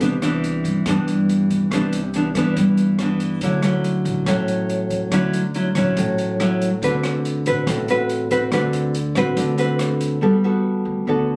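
Bossa nova in D major at 141 BPM, sophisticated and romantic, heard in a short excerpt cut from a longer piece and captured on a phone in a club-like room with light reverb and compression. Up front, a fingerpicked nylon-string guitar with old strings and a classical, woody tone moves through Cmaj9, Dmaj9, D6 and Gmaj9, while a thumpy pizzicato upright bass on steel strings sits in the background. An open jazz drum kit, dark and smooth with a boomy kick and rolled-off top, plays hi-hat, kick and rim click until 10.1 seconds, leaving guitar and bass to finish at 11.4 seconds.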